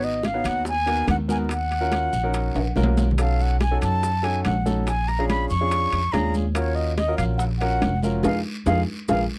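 Sophisticated and sultry, this dry, close Afro-Cuban jazz excerpt in Eb minor at 142 BPM sets a breathy, straight-toned concert flute melody over warm baby grand piano chords and a woody, thumpy pizzicato upright bass up front, with ringing congas, tight high-tuned bongos, metal-shelled timbales, raspy guiro and grainy maracas driving the groove, a drum fill at 2.6 seconds, a band accent at 8.2 seconds, and a hint of vinyl crackle giving it a 1970s studio feel.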